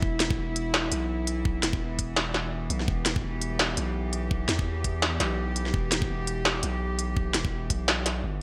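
Bright, 1980s-style digital production with light reverb frames this dark, tense half-time drum and bass piece in E minor at 168 BPM, swung on the 16ths and tuned to A4 = 436 Hz. A close, bowed studio cello section holds sustained chords with a reedy gut-string, period-style tone, roughened by vintage 12-bit sampler grit and pumped by sidechain, over a deep, sine-like 808-style bass whose long notes hit with a fast attack and decay. Up front, a layered, knocking electronic kick in studio reverb is joined at 0.2 s by an industrial kit of clanging snare and crisp hi-hats, bathed in studio and gated reverb.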